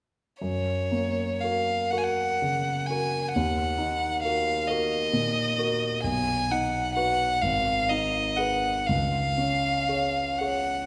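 A clear, focused violin sings a tender melody with vibrato, close and up front, from 0.4 to 10.9 seconds in this serene romantic classical duo, cut from a longer piece. A warm, polished grand piano accompanies it throughout, moving through F#, D#m, B, G#m and C# in F# major. The slow 6/8 pulse of roughly 38-45 dotted-quarter beats per minute flows with gentle rubato, and the pair sits in the wet reverb of a scoring stage.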